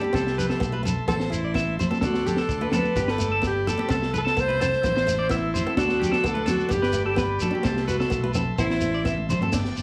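Light studio reverb gives this short, danceable highlife guitar-band cut a warm sound. Up front, a breathy alto saxophone carries the jazz-style melody with a soft subtone, vibrato and scooped notes over a looping C6, Am, D7, G progression. Beneath it, an electric guitar at the edge of break-up plays twangy, fingered arpeggios through phaser and analog delay. Further back, a fingerpicked flamenco guitar adds accompaniment with audible finger squeak, and a vintage overdriven combo organ holds buzzy sustained chords. A round, punchy fingered electric bass plays alongside a compact cocktail drum kit with a high-tuned snare, punchy kick and a dark, rolled-off top. Bright, high-tuned congas struck with hard hands and a grainy, mellow shekere fill out the groove, and a drum fill arrives from 9.1 to 9.5 seconds.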